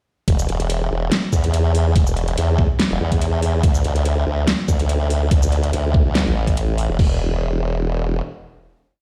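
A heavy wobble dubstep piece opens at 0.3 s straight into an aggressive, chaotic drop. A knocking, up-front electronic kick and a layered, tape-warm kit with a huge snare, metallic hats, shaker and crash drive a swung half-time beat beneath an up-front sawtooth-and-sine wobble bass whose formant filter, chorus and overdrive shape compressed phrases of changing wobble speed. The drums stop at 7.1 s, leaving the bass to sustain a final note until 8.2 s, all heard as if through a big sound system in a bare stone room with little reverb.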